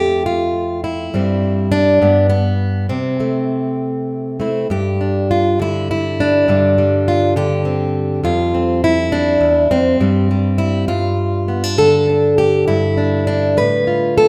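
A bright, fingerpicked steel-string acoustic guitar opens this peaceful folk piece, playing alone and up front in 6/8 with a straight feel. Its plugged-in, concert-ready tone sits in a wet recital hall reverb that gives each note a gentle bloom of space. The opening passage moves through F, C/G, G and C6 before a new section begins at 4.7 seconds, built on open sounds like G5, Csus2/G and Fsus2. Around 10.0 seconds the harmony briefly falls away before returning to G5 and settling on F/A, and the guitar's range stretches from low E2 up to B4. The recording is a short cut from a longer piece, ending at 14.3 seconds.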